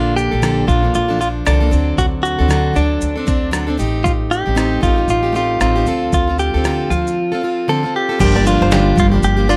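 A 16th-note swing at 116 BPM in 4/4 drives this reflective, wistful acoustic pop fragment in G minor, cut from a longer piece, where a clean, direct-recorded electric guitar with plate reverb carries the melody over a picked steel-string acoustic guitar with audible finger squeak and a growly, woody upright bass up front. A gritty, compressed sampler-style kit enters at 0.2 seconds with thumpy kick, rim click, shaker, snare and crash, while the chords move from Bbmaj7 through D7, Am7b5 and Dm7 under light reverb. At 8.2 seconds the music shifts to Gm7 as a very quiet, brilliant upright piano joins, followed at 8.4 seconds by twangy banjo arpeggios played with fingerpicks.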